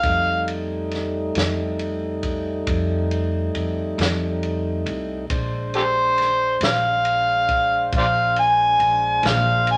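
A gritty, overdriven harmonica plays a soulful, rollicking slow blues solo in 12/8 with light vibrato, tongue slaps and scooped notes, up front over clean sustained tonewheel organ chords through a slow rotary speaker, woody pizzicato upright bass and a vintage kit of punchy kick, medium-tuned snare and dark ride cymbal, all in a wet studio reverb as the harmony moves from F9 to Bb9 at 5.3 seconds in this short cut from a longer piece.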